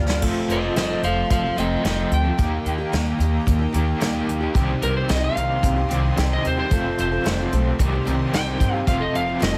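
A slightly broken-up electric slide guitar, played with fingerpicks, carries the melody from 0.5 seconds onward, soloing across this short, wistful and dusty stretch of folk rock and heartland rock at 111 BPM in a straight 4/4. Beneath it, a growly pizzicato upright bass with steel strings anchors the low end, while a soft brush kit with a tight kick and medium-tuned snare sits up front, opening with a drum fill and working crash, hi-hat, kick and snare. A dark, boxy acoustic archtop guitar with old strings is picked as accompaniment, and a double-tracked overdriven electric guitar with tremolo plays a crunchy riff. A very quiet, lush bowed string section holds sustained chords high above, its vibrato clear and focused. The harmony moves from F to Eb and Cm, back to F, then to Cm and F again, and the dry, heavily compressed mix has the sound of a radio broadcast.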